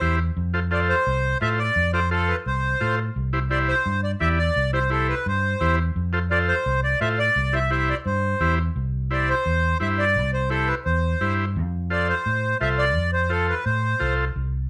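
Lightly reverberant and up front, this joyful, sunny cumbia excerpt in C major moves at 172 BPM in a straight 4/4, with a reedy, close-miked accordion carrying the melody in a dry, full tone with slow beating, a vintage, buzzy combo organ supplying clean accompaniment, and a round, dark, amped fingered electric bass anchoring the low end as the harmony shifts between F and C, before the second section arrives at 8.8 seconds.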